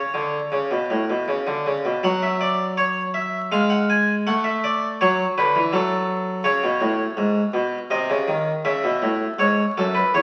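A round, plucked harpsichord in the Flemish style, with a single set of strings and placed up front, plays alone throughout this lively, joyful baroque-style two-part invention, cut from a longer piece. Set in F# minor at 81 BPM in a straight 3/4, it moves from a brief opening idea into a longer second section at 2.0 s, with the harmony shifting among F# minor, C# and C minor colours. The sound carries a stone room's reverb and the crackle of a very old 78 rpm record.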